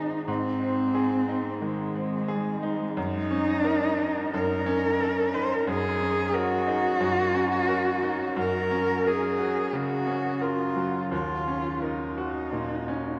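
A muted, bowed cello and a bright baby grand piano open together in this excerpt of neoclassical piano and strings music in Eb dorian, moving at a rubato 89 BPM in 4/4 with a longing, fragile mood. The solo cello, dark and veiled under its mute, sings a second line with vibrato while the brilliant, natural-sounding piano accompanies with long sustain, both placed up front. The harmony drifts from Ab through Ebm7/Gb and Gb to Ebm7, and everything sits in a vast, echoing cathedral space with a long, wet reverb tail.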